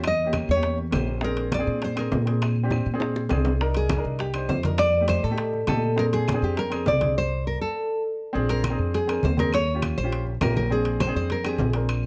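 Afro-Cuban jazz at a lively 202 BPM in Bb mixolydian, this sunny excerpt puts a full-bodied, fingerpicked nylon-string guitar melody with finger squeak and plate reverb up front beside a growly pizzicato upright bass, over an intimate baby grand piano with audible action noise, low-tuned congas, ringing metal-shell timbales, distant woody claves and tight high-tuned bongos that drop out at 7.2 s as the band hits a stop before resuming at 8.3 s.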